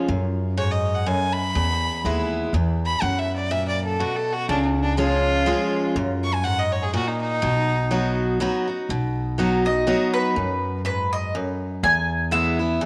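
A swung three-four lilt at 123 BPM drives this brief bluegrass clip in B major, driving and virtuosic from the first bar. A full-bodied dreadnought steel-string guitar, picked and up front, carries the accompaniment across the whole passage, while a plucked upright bass with gut strings adds a dark, thumpy, woody pulse in its low register. The clear fiddle takes the first solo, entering at 0.6 seconds with light vibrato, an airy bow and an earthy, close tone from a single player. After the fiddle drops out at 8.2 seconds, a bright, double-strung mandolin steps forward at 9.7 seconds to pick the melody near the front of the mix. A moderate plate reverb gives the ensemble a gentle sheen, and the harmony moves from F#sus2 through E, F# and C# before landing on B and closing on E.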